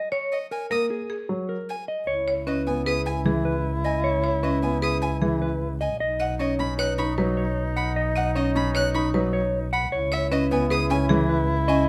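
A mellow, clean electric guitar opens this excerpt of minimalist classical pattern music with the melody. Almost at once it is joined by a buzzing, woody marimba played with hard mallets, a shadowy violin with light vibrato and an airy bow, and a present baby grand piano in accompaniment. The tempo is 153 BPM in a straight 5/4 around C# dorian, and the mood feels urgent yet meditative. At 2.1 seconds a new section begins as a smooth-topped soprano saxophone adds a second line in classical style and a bowed double bass, played sul tasto and up front, takes the bass. The harmony moves from D#m7 to C#m7, passes through B at 6.0 seconds, and returns to C#m7. The marimba's strikes sound dry and bright beside the bowed strings, while close, detailed microphones and light reverb keep the sound intimate.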